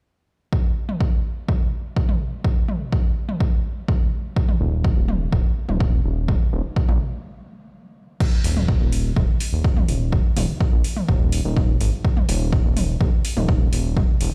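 Melodic techno at 125 BPM in a straight 4/4, carrying a melancholic, hypnotic mood through this short cut from a longer piece. An overdriven electronic kick drum starts at 0.5 seconds, punchy and up front, and a deep house drum kit joins at 0.9 seconds with metallic hats, crash cymbal and toms, also overdriven and sitting lower in the mix. At 4.6 seconds a fat analog bass enters, a thick, detuned sawtooth sound with a filter sweep, fast attack and sustained notes that pump against the sidechain while moving between Eb1 and Bb1. The music halts briefly from 7.2 to 8.2 seconds before a new section begins and carries on to the close. The mix is dry, with a stony, bare-room character, as if played on a big sound system.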